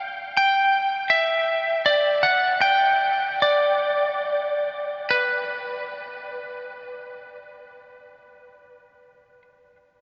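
Soaked in a huge, dreamy ambient reverb with its highs rolled off above 7.5 kHz, this brooding, cinematic rock fragment in straight 4/4 at 68-83 BPM features a single lightly driven electric lead guitar, dark, slightly broken-up, compressed and up front with analog delay, that picks a melody between B4 and G5 from 0.0 to 9.4 s, slowing over the first 5.1 s before moving into a new section that runs to 8.7 s.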